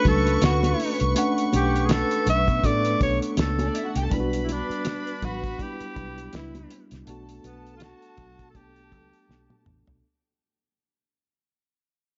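A dulled, reverberant studio sound frames this bittersweet, cinematic stretch of lush 1970s-style soul at 81 BPM in B minor, fading throughout as a breathy, whispered tenor saxophone with scooped notes carries the melody up front over a smooth bowed string section, a mellow tine electric piano heard through its built-in speakers, a round foam-muted fingered bass, a dry cloth-damped drum kit with a fat snare and tight kick, and very quiet high-tuned congas, the harmony shifting from Bm9 to Gmaj9/B at 7.1 seconds before a drum fill arrives at 9.3 seconds.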